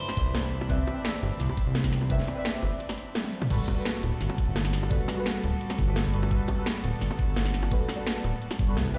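This liquid drum and bass excerpt is dreamy and lush. It moves from a Cmaj9 to a Gmaj9 chord at 3.5 seconds, with a brief break and drum fill just before the change. A deep, mellow chord stab carries the harmony with a soft, dark, wave-folded tone, colored by chorus, phaser, cassette tape and digital delay. Alongside it, a rich chamber string section holds bowed, earthy chords with light vibrato and a touch of 12-bit sampler grit. A smooth synth bass sits up front with a ring-modulated edge, while a knocking electronic kick and a tape-warm, layered drum kit with cracking snare and metallic hats drive the groove, and very quiet, high-tuned bongos add close, dry touches. A bright, twangy clean electric guitar plays only a fleeting picked note with delay at the very start, all set in a large studio reverb with a light digital ambience.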